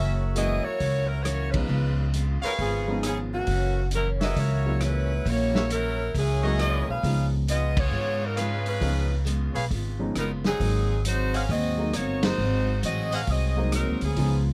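Close, detailed microphones and light reverb give this brassy, energetic big band swing a present, intimate sound, and it is cut from a longer piece. A bright, tight saxophone section leads the melody up front with jazz vibrato, while a trumpet section with light vibrato adds ensemble stabs. A woody, growly pizzicato upright bass sits prominently beneath them. A baby grand piano with short sustain and audible action noise comps alongside a full-bodied, picked dreadnought acoustic guitar tucked in the background. A vintage drum kit, muffled and lo-fi with a rolled-off top, keeps the swing on hi-hat, ride, kick, snare and rim clicks. The full band hits accents at 1.5, 7.7 and 12.2 seconds over a progression of dominant seventh chords.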